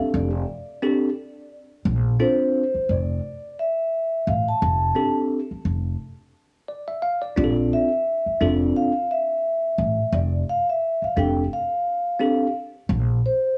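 A mellow soft-mallet vibraphone with its motor off carries the melody through a cassette-tape haze in this cool, warm jazz-hop excerpt at 87 BPM, with swung 16ths in F major, over a bright, bell-like tine electric piano with subtle chorus and a woody, growly pizzicato upright bass, as the harmony moves between F6 and Bbmaj7 in a small, lightly reverberant room until the chords fall away at 12.9 seconds.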